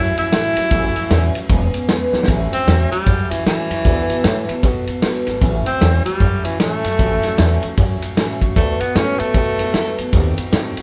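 A breathy tenor saxophone leads this retro, rollicking rockabilly clip, cut from a longer piece. It opens with a short solo over the first 2.3 seconds, its whispered tone carrying vibrato, scooped notes and a soft attack up front in the mix, and it drops out at 10.0 seconds. Beneath it, a bright, full-bodied picked dreadnought acoustic guitar picks out the accompaniment. A woody, thumpy upright bass plucks its gut strings with a dark low end. A vintage drum kit joins at 0.2 seconds with a punchy kick, a medium-tuned snare and dusky ride cymbals, its pumping small-room sound rolled off at the top, and a drum fill at 2.1 seconds leads into the second section. The band plays together live in one large studio with a moderate reverb, swinging its eighth notes over A6 and D6 changes before settling on a D#dim7 at the close.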